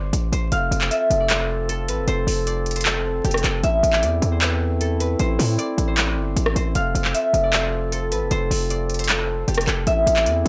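A fingerpicked, ringing concert harp melody and a punchy, heavy sine 808-style bass with a fast attack open this menacing, hard-hitting half-time trap excerpt at 154 BPM, joined at 0.1 s by a booming, tape-toned analog drum machine with metallic hi-hats, handclaps and rim clicks re-recorded in a large room, and at 0.5 s by a distant, vibrato-laden woodwind section holding soft-edged classical chords over Am and F, while a small, dry room sound with gritty hardware grain and vinyl crackle frames the mix.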